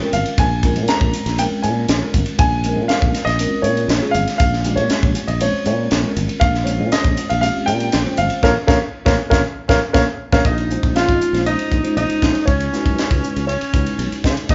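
A tight, up-front funk drum kit with a high-tuned snare drives this straight 4/4 slice of driving, nocturnal electric jazz fusion, while a growly, punchy fretless bass sustains beneath a dark, mellow baby grand that carries the melody with audible action noise. A bell-like tine electric piano through a phaser adds bright, clean accompaniment, and after a band accent at 8.4 seconds the harmony shifts into minor at 10.5 seconds, where a warm tenor saxophone enters as a second line with vibrato and scooped notes. The band plays live in one room with moderate large studio reverb and a rolled-off top, and the piece is cut from a longer performance.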